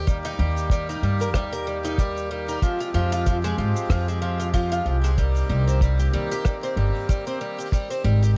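Pastoral and hopeful, this short folktronica cut runs at 94 BPM in 4/4 with a light 16th-note swing, moving through Eb, Fmadd9, Cm7 and Abmaj7. A shimmering, octave-doubled twelve-string acoustic guitar picks boxy arpeggios through a digital delay over sustained, reedy accordion chords, while a woody, thumpy pizzicato upright bass and a tight kick drum sit up front. A soft brush kit with cabasa, hi-hat and rim click adds dark, smooth texture from a studio room, and vinyl crackle colours the close, nearly reverb-free sound.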